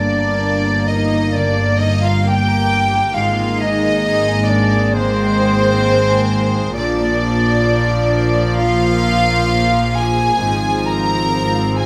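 Bittersweet and moving, this cinematic film-score fragment unfolds at a rubato 66 BPM in 4/4, passing through Gm, Abadd9, Bb and Fm/Ab over 11.9 seconds. A clear, floating violin section carries the melody sul tasto while a pure, straight-toned silver flute plays a second line. An intimate second violin section with light vibrato and a soft, distant viola section fill the middle. Beneath them a ringing, fingerpicked harp spins arpeggios in the background, and a background cello section pairs with a rich, smooth-topped double bass section on the bass line, heard through close, detailed microphones in a moderate scoring-stage reverb.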